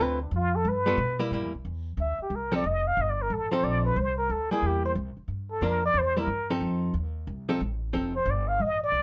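A plunger-muted trumpet takes the lead in this relaxed small-group swing and bop excerpt at 181 BPM, its breathy, wah-wah tone carrying a soft attack, vibrato and a smooth top as it solos throughout the 9.0 seconds. A clean, compressed hollow-body archtop guitar, picked and miked through an amplifier, supplies the accompaniment until 8.1 s, while a pizzicato upright bass on gut strings adds a woody, thumpy low end. Light reverb frames the group as it swings through a progression moving from Dm7 and G9 through C7 and F7.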